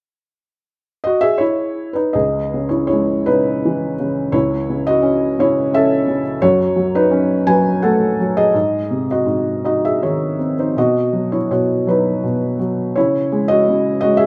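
A felt-muted upright piano, mellow and intimate and set up front, enters at 1.0 s and plays alone across a lyrical classical fragment in C# minor, moving in a rubato 3/4 at around 78-89 BPM through a bittersweet, cool progression that comes to rest on C#m, all held in a moderate recital-hall reverb.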